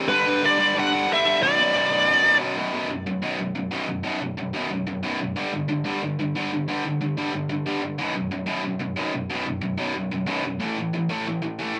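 A straight 4/4 pulse anchors this dark, aggressive metal fragment, where a tight, distorted, double-tracked rhythm guitar picks a low riff up front through all 11.8 seconds, moving over chords from G to B5, G5 and A5. A bright, high-gain lead guitar cuts in with a short picked melody from 0.1 to 2.4 seconds before dropping out just ahead of the second section at 2.7 seconds. Light reverb sits over a rough home demo mix.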